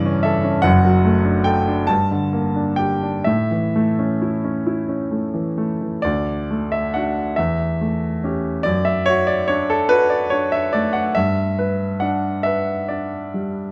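A clear, polished baby grand piano sits up front in this tender, dreamy romantic nocturne, cut from a longer piece and played solo in D major at a slow, rubato 41-52 BPM in 12/8, spanning F#1 to A5 over chords such as Gm, A and D/F#, with a new section arriving at 6.0 seconds, all framed by light reverb in a dark production.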